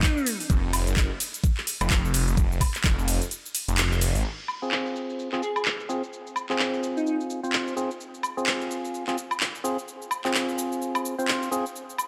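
Swaggering and gritty, this bass house excerpt struts at 128 BPM in F minor with a swung 16th feel, opening on a drop where a knocking, tape-warm kick and an overdriven house kit with metallic hats, claps, shaker, woodblock and cymbals hit up front, while a swirling, thick, detuned saw bass with phaser and sidechain pumping enters at 0.5 seconds. The kick drops out at 3.3 seconds before a band accent at 3.8 seconds, and from 4.6 seconds a hollow, percussive organ stab with dub echo takes over on an F minor chord under a filter sweep. An airy, dreamy lead with chorus, vibrato and dub echo floats in briefly at the very start, returning between 5.4 and 7.2 seconds, all set in a light reverb.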